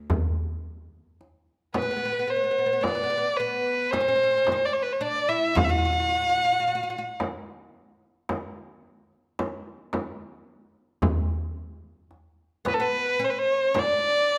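A focused, vibrato-rich single violin leads this passionate, stately excerpt of Arabic maqam music in D maqam rast, its smooth top sitting up front over a 10/8 metre at 110 BPM. Darbuka with a deep, saturated clay-shell tone and a close, dry frame drum played with soft hands carry the percussion from the opening, while a woody, fretless oud with double strings enters at 1.7 seconds as a second line beneath the violin. A moderate recital hall reverb lends the ensemble a stately space.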